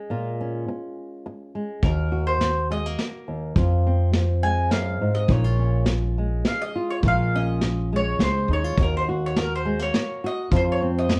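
This is acoustic folk for a duo or small band, cut from a longer piece, moving at 104 BPM in a straight 3/4 in Eb dorian with a haunting, melancholic mood. A fingerpicked nylon-string guitar opens alone with a classical touch on a Bbm7 chord, and the rest of the group joins at 1.8 seconds. From there the mandolin takes a solo, its picked double strings sounding round in the upper register. Beneath it, the upright bass plays pizzicato on gut strings with a woody, thumpy low end. A vintage brush kit of hi-hat, punchy kick and medium-tuned snare has a muffled, lo-fi, small-room character with a rolled-off top. The chords pass through Ebm, Fm, Bbm7 and Ebm again before landing on F5, with every part placed up front in a dark, warm production with moderate studio reverb.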